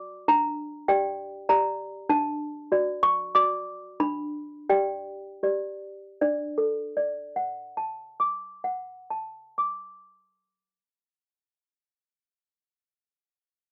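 A solo toy piano opens this short classical lullaby cut from a longer piece, its clanky, bell-like tone slightly out of tune and sitting up front in a dry, close 1970s-style studio sound. In a gentle 3/4 at 75-100 BPM in D major, the tender, innocent melody ranges from D4 to D6 over chords moving from Gm/D through D and G/D, slowing down between 1.2 and 6.2 seconds before settling back on D as a second section begins. The toy piano plays until 12.3 seconds.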